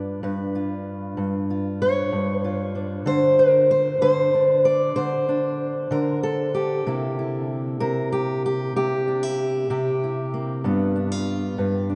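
A fingerpicked steel-string acoustic guitar, dark and boxy and up front, carries this laid-back, rollicking acoustic country blues excerpt alone at 63 BPM in a straight 12/8, moving from G7 through a chordless stretch to C7 and back to G7 while ranging from G2 to D5, all set in a vast, echoing cathedral reverb with a dulled top end.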